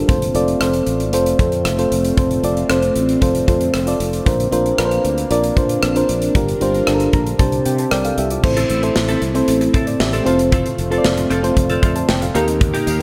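This 1980s-style pop excerpt in F major moves at 115 BPM in a straight 4/4, with a nostalgic, glossy mood set in a moderate, lush hall reverb. A mellow, warbling FM electric piano sits up front with the accompaniment, adding a fill from 6.9 to 8.4 seconds, while a swirling, detuned analog pad holds sustained chords in the background through phaser and chorus. A growly fretless electric bass with analog chorus and a tight, up-front studio drum kit of kick, medium-tuned snare, rim click, hi-hat and crash enter almost at once. At 8.4 seconds a clean, picked electric guitar joins with a compressed riff bathed in lush chorus and delay, as the chords shift from F, Bbadd9, Gm7 and Csus2 toward Am, F and Eb. A jingly tambourine appears only at the final moment, at 12.9 seconds.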